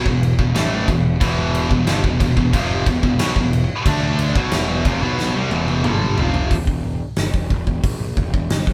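A heavy, high-gain electric guitar sits up front in this relentless, epic heavy metal passage, its picked, distorted riff joined by a tighter second guitar that stays further back in the mix. Beneath them, a fuzz-laden electric bass adds a growly, punchy low end with a direct, amped overdrive. A big acoustic rock kit drives the straight 4/4 feel with a punchy kick, a medium-tuned snare, toms and sparkling crash and hi-hat cymbals, sounding natural in a large room. A drum fill arrives at 5.2 seconds, and when both guitars drop out at 6.5 seconds, bass and drums carry on together to the end. Light reverb gives the whole band the sense of playing live in one room, and the recording is cut from a longer piece.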